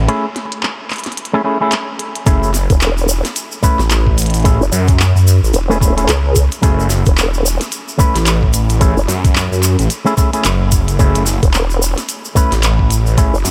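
A swaggering, playful glitch hop excerpt at 110 BPM in F# minor, swinging on a 16th-note groove over an F#m9 chord, opens with a break where a swirling, thick phased detuned saw bass with tube saturation sits up front alongside dark, clean envelope-filtered electric guitar stabs with sidechain pumping and delay, plus a glitchy kit of handclaps, clicky hats and a tiny snare in small room ambience. At 2.3 seconds a gritty, thumpy, pitched-down electronic kick and a grainy, bright tube shaker arrive, followed at 2.7 seconds by a nasal, resonant vowel-sweep wobble bass with chorus that shares the front of the mix. Light reverb gives the whole a digital ambience.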